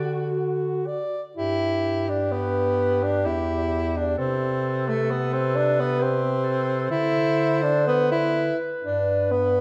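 Classical and tender, this short excerpt for single-reed quartet moves in a lyrical, rubato 3/4, with a breathy, vintage-toned clarinet carrying the melody from the background, a warm alto saxophone singing the second line, a mellow tenor saxophone with vibrato and soft attack giving up-front accompaniment, and a smooth-topped bass clarinet anchoring the bass, all set in the wet reverb of a recital hall as the harmony drifts from D to a closing G at 8.8 seconds.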